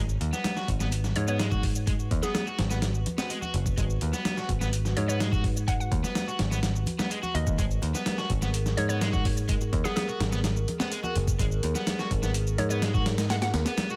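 A gritty, overdriven sampler-style drum kit sits up front with a thumpy kick and a medium-tuned snare, driving this energetic, raw breakbeat excerpt alongside a punchy picked electric bass. A crunchy, double-tracked overdriven guitar riff runs through low-pass filtering and tape echo, while a hollow, bouncy square pluck carries the melody with chorus, ring modulation, a filter sweep and a small-speaker tone. Underneath sit a dry electronic shaker and very quiet close-miked congas and bongos, while a moody, detuned analog pad with sidechain pumping holds sustained chords in the background, all in a dry, close sound.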